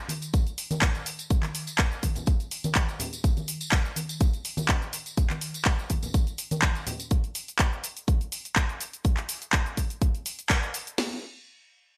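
A swung house groove at 124 BPM in 4/4 drives this groovy, funky drop from a longer piece. It is built on an up-front house drum kit, layered and re-recorded in a large room, with a punchy kick, cracking snare and crash cymbal, alongside a tape-warm analog drum machine whose handclaps, hi-hat and shaker carry sidechain pumping and gated reverb. Compressed, saturated acoustic congas and tambourine also pump until they stop at 7.1 seconds, a band accent lands at 10.5 seconds, and light reverb with a bright 1980s-style digital sheen frames the mix.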